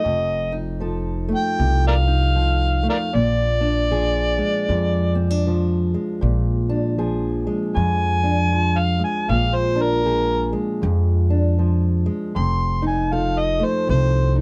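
Acoustic country blues with a soulful, gritty swing, cut from a longer piece, where an amplified, overdriven harmonica takes the jazz-inflected melody up front with light vibrato, tongue slaps and scooped notes, over a fingerpicked, boxy old ladder-braced acoustic guitar with tired strings and a woody pizzicato upright bass on steel strings, all moving from F7 to Bb7 and back to F7 at 12.3 seconds in a dark production with light reverb.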